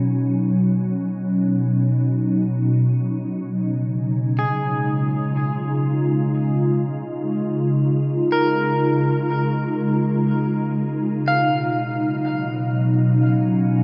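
In free time, this serene, luminous ambient piece in B lydian, cut from a longer work, rests on a glassy, ethereal FM pad holding sustained chords up front from the start, moving from Badd9 to C# and back, while a slightly broken-up, twangy electric guitar enters at 4.4 seconds with picked arpeggios through spring reverb and diffuse delay, all set in a vast, echoing space with a cassette-tape tint.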